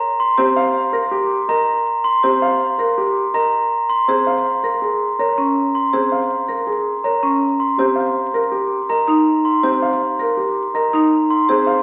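A bell-like glockenspiel, struck with soft plastic mallets, rings out on top of this hypnotic, meditative piece of minimalist pattern music, cycling arpeggios between Bb5 and C6 from 0.2 s. Just beneath it, a woody rosewood marimba played with hard mallets spins its own percussive arpeggios between Db4 and Bb4, while a clear baby grand piano plays an accompaniment on C4 with its action noise audible up close. A dark, mellow concert grand carries the melody between G4 and F5, sitting lower in the mix with deep bass and a vintage, intimate character. At 162 BPM in a straight 5/4, the harmony alternates between C7 and Bb7 chords voiced with their thirds omitted. The whole texture sits in a stone room reverb and comes through the crackle of a very old 78 rpm record, cut from a longer piece and ending at 11.8 s.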